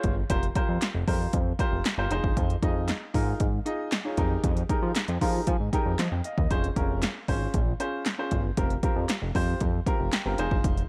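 Early-eighties boogie funk with a funky, late-night mood, built on a straight 4/4 groove from an electronic, layered drum kit with a punchy kick and snare, smooth hi-hats and handclaps, re-recorded in a small room and set up front. A fat, nasal analog bass with a sawtooth bite and a plucked filter sits alongside a warm baby grand piano comping through sus, major seventh and minor eleventh chords over an F pedal. The piano breaks into fills at 5.0 and 9.6 seconds in this dry, close-sounding excerpt from a longer piece.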